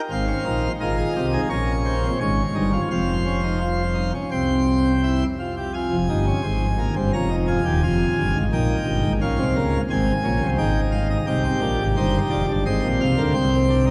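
A solo pipe organ on full plenum with mixtures opens this contemplative, serious baroque-style fugue in four voices, its brilliant, up-front tone carrying audible chiff across a span from Eb1 to Bb5. Heard as a fragment of a longer piece, the straight 4/4 counterpoint moves into a second section at 5.7 seconds, with minor-leaning harmony passing through diminished and suspended chords. A cathedral reverb with a long tail surrounds the organ, lending the dark, warm production a vast atmosphere.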